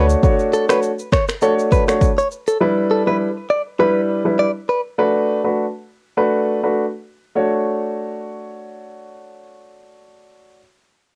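A bright, clean electric guitar, recorded direct, picked and compressed, carries the riff up front between A4 and D5, its tone coloured by tape echo before it drops out at 4.8 seconds. This is a romantic, joyful afrobeats cut in D major at 101 BPM, in 4/4 with a light 16th-note swing, taken from a longer piece. A warm grand piano sits close in the mix, playing accompaniment from G3 to C#5 across the whole passage as the chords move through Dmaj7, Em7 and Bm7 before returning to Dmaj7 at 7.4 seconds, where a second section begins. An electronic, produced afro-pop drum kit with a deep kick, rim click, finger snaps and shaker is heard only briefly at the start, stopping at 2.6 seconds. The guitar, piano and drums each carry a cassette tape colour, and the whole recording has the character of a home cassette recording with light reverb.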